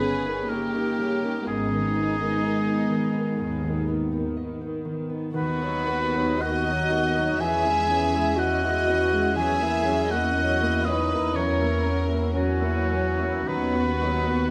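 A tender, romantic slow movement for symphony orchestra opens with the full ensemble at once. A rich, sul tasto violin section carries the melody with light vibrato, while a clear, up-front oboe sings a second line beside a floating second violin section; pure-toned violas accompany, and intimate cello and double bass sections supply a soft-edged bass. A ringing harp plays arpeggios in the background as the rubato phrasing unfolds in a reverberant stone room, with a faint mains hum underneath.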